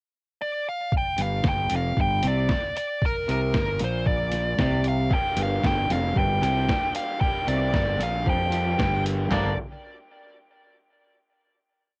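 A straight 4/4 indie four groove at 114 BPM comes from a muffled, pitched-down trip hop sampler-style drum kit with a thumpy kick, medium-tuned snare, handclaps, hi-hat and toms, entering at 0.9 seconds under a bittersweet, restless indie rock piece in G minor that sits on a single Gm chord after a short pickup bar. Up front, a nasal lead guitar with a parked wah plays hook-like motif phrases through overdrive, tape echo and cassette grit, while a clean, scooped twangy electric guitar plays a fingered single-note riff that the growly fuzz bass doubles with simple root-and-fifth playing. At 5.1 seconds a raw, lo-fi garage guitar adds ringing overdriven chords with lush chorus, and the home cassette recording, with its light reverb, ends on a final chord from 9.3 seconds.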